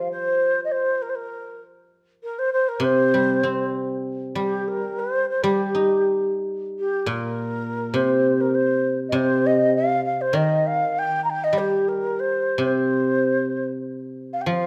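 Chinese traditional music unfolds here in a tender, graceful mood, moving at 99 BPM in 4/4 with a free, rubato feel in the C yu mode. A breathy bamboo xiao carries the melody within a range of G4 to Bb5, its end-blown tone airy and distant yet expressive and up front, shaded with vibrato and tongued notes. Beneath it, a guzheng plays with fingerpicks across the lower register from Bb2 to Eb4, its mellow, silvery strings ringing as accompaniment. Both instruments sound together throughout this 14.7-second excerpt, which opens with a brief first passage before shifting to a second at 4.4 seconds. A wet recital hall reverb with a 1.4-second decay surrounds the pair in a spacious, resonant room.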